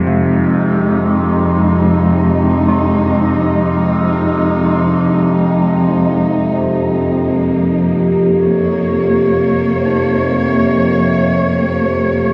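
Dark ambient drone in free time, this brief, desolate fragment cut from a longer piece rests on a single Dbadd9/F chord, held by a lush, bowed cello section sustained up front from F2 to Db5 with vibrato and a soft attack. Beneath it an evolving, resonant drone between F2 and C3 sweeps through moving overtones, its slow attack and long release thickened by chorus and built-in reverb. Entering at 0.1 seconds, a very quiet bronze gamelan-type metallophone rings out arpeggios from C3 to Eb4, all set within a cathedral reverb that lingers for 6.9 seconds.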